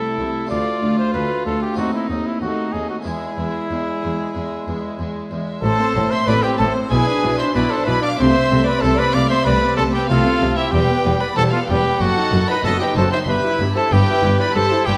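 In straight 4/4 at 94 BPM, this stormy, driving baroque-style concerto movement in A minor sets an up-front trumpet solo against gut-string violin sections carrying the melody and a second line, a shadowy background viola section, a full Flemish-style harpsichord, and a warm bowed cello section on the bass, joined at 5.6 seconds by a rich double bass section, all in a reverberant recital hall as the harmony moves from a diminished chord to E and later turns toward E minor.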